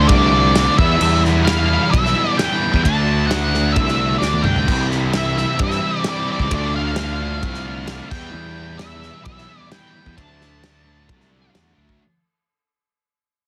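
A dark octave-fuzz lead guitar carries the melody up front over a growly, overdriven fingered bass and three background riffing guitars (a bright, double-tracked high-gain part, a thick, dark fuzz part and a tight distorted one), while a loose acoustic indie drum kit with a rolled-off top enters at 0.1 seconds and plays a fill at 4.2 seconds in this fading, angsty and brooding quiet-loud alternative rock passage from a longer piece, set in a small room with a heavily compressed, radio-like sound.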